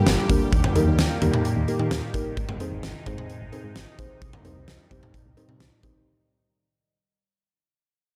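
Driving and cool, this synth-pop fragment cut from a longer piece moves at 130 BPM in a straight 4/4, fading out across its six seconds over a Gm, Eb, Ab and Cm progression. A huge arena drum kit sits up front with a punchy kick, fat snare, hi-hat, toms and cowbell, while a round, dark FM bass with a fast attack anchors the low end. Muted, felt-like synth keys with chorus add soft, intimate accompaniment, and a bright, swirling analog pad with phaser and chorus holds detuned sustained chords, all in a dry, gritty hardware sound with light small-room reverb.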